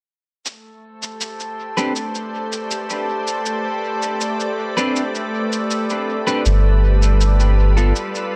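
A deep, round dub sub bass arrives up front at 6.5 s on a low G1, anchoring this spacious, meditative ambient dub fragment at 80 BPM in A minor as the harmony moves from Am11 to G9. Before it, a soft, organ-like pad fades in with detuned, bright sustained chords bathed in ensemble chorus, reverb and vintage 12-bit sampler grit, while a glassy texture of drifting sine overtones hovers on A4. Slightly broken-up electric guitar stabs, picked and compressed under a low-pass filter and dub echo, enter at 1.8 s, and a muffled, pitched-down cabasa with a tape-warm tone and its own dub echo keeps a straight 4/4 pulse in a light digital ambience.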